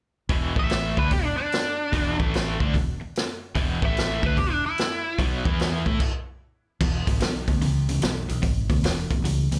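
A bright, overdriven stack guitar riff with tremolo kicks off at 0.3 s alongside a dark, round fingered bass and a punchy vintage kit, setting a driving, swaggering swung blues rock and southern rock groove that a nasal lead guitar with a parked wah and slapback echo joins at 0.6 s, before a stop at 6.0 s gives way to a new section, all heard through a live club PA with little reverb and the room's ambience.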